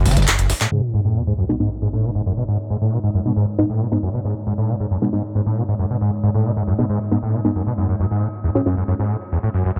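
A straight 4/4 pulse at 136 BPM drives this dark, relentless peak-time techno in G# phrygian, where an up-front layered electronic kit with metallic hats, handclaps and crash carries a screaming, squelchy acid line of resonant, distorted sawtooth with chorus and tape echo, while a gritty, compressed snare and tambourine flash by in the opening moments, a sub drop sinks in at 0.7 seconds, and from 1.5 seconds an eerie inharmonic FM drone and muted, detuned dub chord stabs, phased, echoed and filter-swept, hover in the background inside a light digital ambience.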